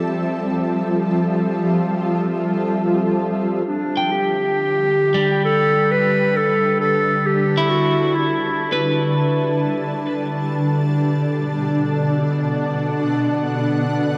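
Luminous and warm, this ambient passage, cut from a longer piece, opens on a shimmering, detuned pad holding Fmaj7 before the harmony moves to Dsus4 at 3.7 seconds and later settles on Bm7. A clear, close-miked clarinet then takes a short classical-style solo through tape echo, joined by slightly broken-up electric guitar arpeggios, also echoed, and a mellow, evolving analog drone with chorus, while the pad gradually fades in beneath them. The whole passage sits in a vast, echoing space with huge, wet reverb and a cassette-tape grain.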